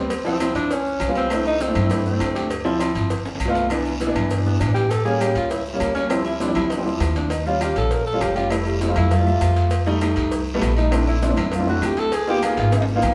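Afro-Cuban jazz with a sophisticated, lively mood, this excerpt from a longer piece moves at a brisk pace in a straight four-beat feel. A dark, breathy tenor saxophone takes the solo throughout, its tone shaded by light vibrato, scooped notes and a smooth top. Up front, a woody, polished upright piano supplies the accompaniment while a pizzicato upright bass with steel strings grounds the harmony through chords such as Dm9, Cmaj9 and Bbmaj9#11. Behind them sits a percussion bed: bright, high-tuned congas played with soft hands, a round, low-tuned cowbell, ringing agogo bells and timbales, raspy guiro, grainy maracas and very quiet claves that enter at 0.4 seconds. Drum fills arrive at 3.3 and 12.7 seconds, and the piano adds a fill at 12.9 seconds, all heard from further back in a large studio with a wet reverb.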